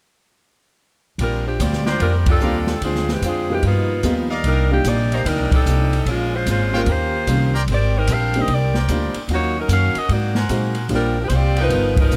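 Brassy and joyful, this big band swing moves at 148 BPM in Bb major, with a bright, tight saxophone section carrying the melody up front over a woody, thumpy upright bass and an airy jazz drum kit with dark cymbals and a boomy kick. A brilliant trumpet section adds stabs from 1.9 seconds, an intimate baby grand piano with audible action noise joins at 2.4 seconds, and a boxy, picked parlour steel-string guitar with finger squeak sits in the background. Band accents punctuate the rich extended harmony, and close, detailed microphones with light reverb give the sound a crisp clarity.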